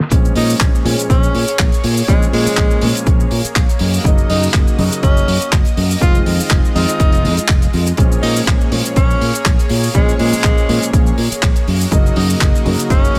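A bright, close-miked tenor saxophone carries the solo melody from 0.4 seconds, its vibrato roughened by vintage 12-bit sampler grit and trailed by delay, in this cosmic, sensual nu-disco drop at 122 BPM in Bb minor with a light 16th-note swing. A punchy electronic kick sits up front beside a dry, damped 70s kit of fat snare, hi-hat, handclaps and cabasa, all softened by low-pass filtering, while a fingered electric bass plays direct and amped. A dark, mellow baby grand piano with delay supplies the accompaniment as a lush, detuned sawtooth pad with chorus and sidechain pumping fills the background over Bbm7, Gb6 and Fm7, all in a dry mix with little reverb, cut from a longer piece.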